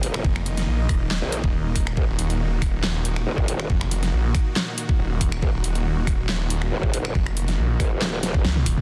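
This menacing, aggressive stretch of heavy wobble dubstep opens with lush, detuned supersaw chords pumping under sidechain, a wobbling, formant-filtered growl bass with chorus and overdrive, and a layered electronic drum kit with a huge snare, bright hats and soft clipping on the snare. At 0.2 seconds a snarling, distorted sawtooth bass with a moving notch and a knocking electronic kick arrive up front, driving a half-time feel at 139 BPM in Eb minor. The two basses sit low and saturated, while the sustained chords float behind them from an Eb5 opening. The drum kit adds finger snaps, handclaps, hi-hat and toms, and a drum fill begins at 8.2 seconds, with a band accent landing at 8.4 seconds. The dry, dense, heavily limited modern mix keeps the kit tape-warm, and the whole cut is taken from a longer piece.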